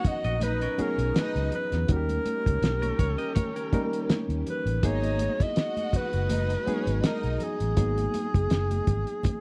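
An up-front alto saxophone carries the melody with vibrato and scooped notes in this smooth, silky 1970s-style soul excerpt at 82 BPM in G# minor, moving over Bmaj7, D#7 and G#m7 with a gentle sixteenth-note swing. A bowed studio string section adds an expressive second line until 7.6 seconds. Meanwhile a barky, lightly overdriven reed electric piano accompanies and adds a fill at 9.2 seconds, a phased string machine holds lush sawtooth chords in the background, and a twangy clean guitar plays a riff with harmonic tremolo until 4.6 seconds. Underneath, a round, foam-muted fingered bass and a thuddy, cloth-damped drum kit with a fat snare sit close and dry, with high-tuned congas ringing behind them.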